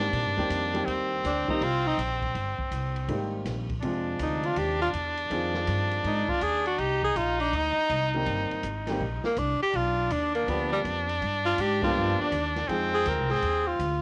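A punchy trumpet playing a second line with plate reverb, woody upright piano, growly pizzicato upright bass and a dark, boomy jazz kit tucked in the background open a late-night small-group swing-and-bop groove at 162 BPM in C minor over Cm7, Fm7 and G7#9, while a clear tenor saxophone with subtone, light vibrato and scooped notes drops a brief phrase at 1.3 seconds before taking the melody up front from 4.2 seconds, the band hits an accent at 11.8 seconds, and the whole clip carries the light reverb of a home cassette recording.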